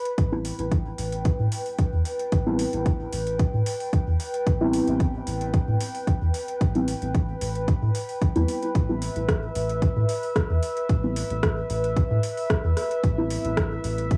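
Hypnotic and nocturnal, this dub techno excerpt in A minor moves at 112 BPM in straight 4/4, resting on a single Am9 chord. An overdriven, up-front electronic kick and a deep house kit of metallic hi-hats and rim clicks sit alongside a round, dark analog bass, while deep mellow chord stabs, nasal and full-bodied, carry chorus, phaser and dub echo under a filter sweep that runs the full 14.2 seconds. Above them a warbling, detuned tape-like pad holds sustained, lo-fi chords with a nostalgic haze; the pad, bass and stabs all pump with sidechain, the pad, stabs and drums carry cassette grit, and the whole mix sits in a small home room with light reverb.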